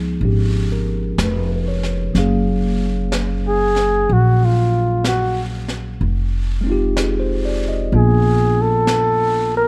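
Romantic and intimate, this slow jazz ballad at 62 BPM in swung 4/4 opens with clean tine electric piano chords and a woody, thumpy pizzicato upright bass, is joined at 0.2 s by a brushed drum kit with a high-tuned snare and a rolled-off top, and then at 3.5 s brings in an up-front flugelhorn solo, breathy and mellow with light vibrato and scooped notes, over Db9, Gbmaj9 and Fm9 harmony in a dark, dry production.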